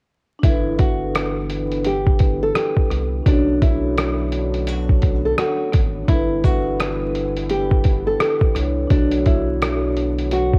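A muffled, sampler-style drum kit sits up front in this hazy, nostalgic lo-fi hip hop clip, its compressed, thumpy kick, hi-hat and rim click carrying a roomy character from being re-recorded in a large room, all moving at 85 BPM in 4/4 with a 61% swing on the 16ths. Over it, a fingerpicked nylon-string guitar carries the melody with a full-bodied, deep classical tone, while a vibraphone played with soft mallets adds mellow, airy, ringing accompaniment shimmering with a slow motor vibrato. In the background, a smooth, vintage analog pad built from detuned sawtooth and triangle tones holds sustained chords, its lush chorus giving it a warbling quality. Beneath them, a round, deep dub sub bass supplies soft, sustained low notes. Every part plays throughout, from 0.4 to 10.6 seconds, over a gentle alternation between G6 and Bm9 chords. The drums, guitar, vibraphone and pad carry a cassette-tape coloring, and the whole home-made recording is dry and dusted with vinyl crackle.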